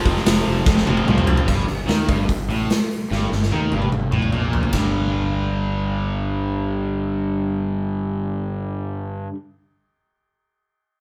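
A big, natural-sounding rock kit with a punchy kick and a medium-tuned snare drives this aggressive, menacing hard rock excerpt, rolling through two drum fills before dropping out at 4.8 seconds. A bright, double-tracked overdriven stack guitar picks a low riff over F5, Gm and G5 chords, joined underneath by a growly, fuzz-laden fingered electric bass. The guitar and bass carry on together to 9.3 seconds, all captured up front as a band playing live in one room with light reverb.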